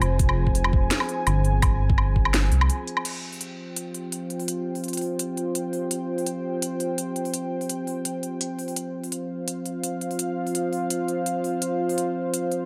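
A half-time drum and bass groove at 168 BPM in 4/4 drives this tense, shadowy fragment in F minor, cut from a longer piece. A layered electronic drum kit sits up front with a cracking snare, crisp hats, crash cymbal and woodblock, all carrying a tape-warm sheen, while a knocking electronic kick joins at 0.2 s and drops out at 2.2 s. Beneath it, a deep, rumbling detuned saw bass with beating unison voices and a fast attack sustains low notes until 2.7 s, where a brief break opens the way into the longer second section. A moody, full-bodied analog pad holds sustained chords throughout, opening on an F5 chord, its slow attack, sub-octave weight and long release evolving under chorus and sidechain pumping. A moderate plate reverb soaks the mix in a dreamy haze.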